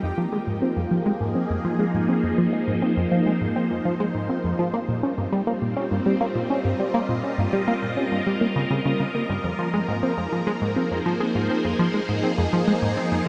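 A huge, wet reverb with a long 8.4-second decay surrounds this short cut from a longer piece of ambient, sequencer-driven space music, setting a hypnotic, cosmic mood in F minor at 102 BPM in a straight 4/4. A tight sequenced synth drives a riff through the low and middle register, its detuned sawtooth tone nasal and plucky with a fast attack, a moving notch, chorus, analog delay and shimmer reverb, sitting up front. Above it, a phased string machine holds sustained chords with a swirling, vintage character, its bright sawtooth voice opening on a slow attack and fading on a long release through ensemble chorus, phaser and shimmer reverb. Both parts play together from the start through about 13 seconds. The harmony rests on F minor, moves to G diminished at 4.7 seconds, and returns to F minor at 9.4 seconds.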